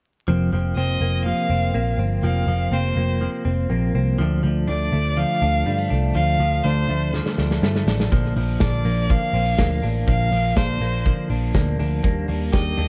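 This bright, breezy slice of jangly indie pop opens at 0.3 s with two clean electric guitars and a bass settling into F mixolydian at 122 BPM in a straight 4/4. A fingered, compressed guitar drapes lush chorus and analog delay over the accompaniment from the background, while a twangy, direct-recorded guitar picks arpeggios through tremolo and its own delay. Up front, a vintage foam-muted picked bass gives a dark, round low end. At 0.8 s a clear, focused solo violin enters with a close, bowed melody full of vibrato, trailed by analog delay. The loose indie drum kit arrives with a fill at 7.1 s, its punchy kick and medium-tuned snare sounding in a pumping studio room with a rolled-off top, as the harmony moves from Fsus4 through Dm and Bb to a closing Ebmaj7. Light reverb, an echo-heavy mix and vinyl crackle give this short cut from a longer piece a nostalgic haze.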